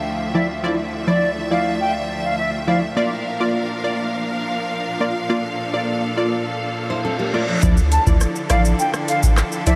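Bouncy and sultry, this dancehall excerpt opens on lush, bowed string chords that pump against the beat, joined almost at once by punchy, detuned chord stabs with a filter pluck and a shimmer of chorus. A pure, distant concert flute sings a brief expressive line through tape echo, falls away, and returns at 7.9 seconds. Just before the change, a reverse cymbal rises in the background while a fingerpicked nylon-string guitar, complete with finger squeak, adds a short run of echoing arpeggios. At 7.6 seconds a booming analog drum machine arrives up front with a deep kick, metallic hats, handclaps, rim clicks and shaker, alongside a sine sub bass whose pitch-drop attack hits hard. The whole mix is soaked in a huge ambient reverb that leaves it dreamy.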